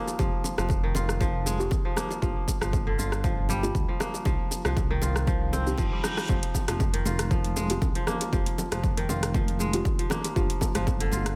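Afro house at 118 BPM in F dorian, this excerpt from a longer piece moves with a driving, warm feel and a light swing on the sixteenths. A crisp, ringing kora plays fingerpicked arpeggios throughout, carried on delay and sidechain pumping, while a dark, nasal chord stab sits in the background with chorus, delay and a filter sweep across its full length. Underneath, a smooth sawtooth-and-triangle synth bass holds the low end with pumping, and a punchy, overdriven electronic kick drives the groove alongside a deep house kit of metallic hats, rim click and shaker. Round, low-tuned bongos murmur in the background from the start, and a brief electronic reverse cymbal at 5.6 seconds leads into bright, high-tuned congas that enter at 6.3 seconds, very quiet and distant in a large room. The harmony cycles through Fmadd9, Gm7 and Cmadd9, all wrapped in a digital ambience.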